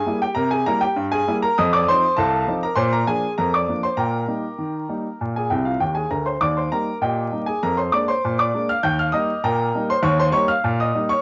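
Jaunty and lively, this short excerpt of ragtime piano moves at 99 BPM in a straight 2/4, set in Eb major and tuned slightly flat at A4 = 439 Hz. A single upright piano plays solo throughout, sitting up front with a woody tone and long sustain, and it ranges from C2 up to G6. The harmony runs through a chain of dominant chords, C7 to F7 to Bb7, before settling around Eb and Bb and ending the passage on Eb7. A short piano fill from 5.5 to 6.4 seconds leads into the return to Eb. The sound carries the character of a home cassette recording, with vinyl crackle, a light reverb in a small room, and a top end that rolls off at 7.5 kHz, lending the instrument a warm, aged feel.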